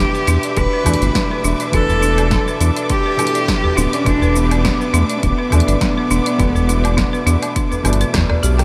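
A sul tasto cello carries the melody over a felt-muted upright piano, lush distant strings, woody hard-mallet marimba arpeggios and a round, up-front analog bass in this hypnotic organic downtempo fragment at 103 BPM in E minor, with an overdriven deep house kit with punchy snare entering at 0.1 seconds, a deep electronic kick at 0.6 seconds, a small udu in the background, and a drum fill closing the dreamy, reverb-soaked mix from 7.9 seconds.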